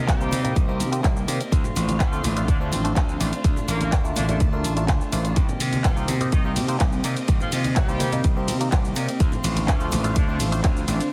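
Funky and nostalgic, this short cut from a longer filtered disco house track moves at 125 BPM in a straight 4/4, cycling through Cm7, Dm7 and Bbmaj7 in C dorian with slightly flat tuning. A punchy, up-front electronic kick with studio reverb and an overdriven, gritty slap bass drive the groove. Around them sit a house kit of handclaps, bright hats, ride and shaker with sidechain pumping, quiet ringing congas and egg shaker, a stringy clav through phaser, a scooped clean guitar riff in the background, a bright horn section with light vibrato and octave doubling carrying the melody, and a very quiet, lush string machine holding slow-attack chords, all squeezed into a dry, heavily compressed radio sound.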